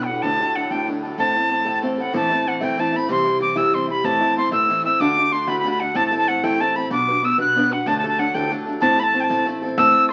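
A straight 6/8 jig at 126 BPM drives this dark, lively Celtic folk excerpt in A dorian, where an airy metal whistle with vibrato carries the melody up front over boxy picked archtop guitar chords and a woody pizzicato upright bass in the background, while a shimmering musette accordion drones on A only until 2.2 seconds, a damped, tight bodhran enters at 9.8 seconds, and the whole track sits in wet studio reverb beneath the crackle of a very old 78 rpm record.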